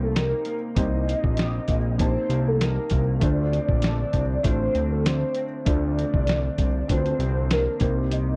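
Indie bedroom pop at 98 BPM in 4/4 with a light 16th-note swing, hazy and mellow, cut from a longer piece and moving from Cm7 to Dm7 and back. A round, octave-layered synth lead carries the melody through phaser, ensemble chorus, slapback echo and vibrato, over a fat, saturated analog bass and a muffled, pitched-down sampler-style drum kit with a thumpy kick, both sitting up front. In the background, a dark, slightly broken-up electric guitar drifts in pitch through analog chorus, and a woody upright piano with audible action noise carries a cassette tape tint, in a dry, close 1970s-style studio sound.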